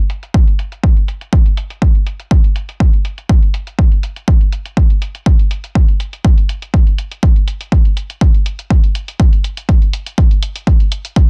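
A punchy electronic kick drum sits up front in this gritty, hypnotic house groove in straight 4/4, entering at 0.3 seconds and carrying through to the end of this short section cut from a longer piece. A quiet electronic hi-hat, low-pass filtered, plays well beneath it in level; both parts have an analog, tape-warm character and were re-recorded in a small room. The sound is dry and dense, with a heavily limited modern master.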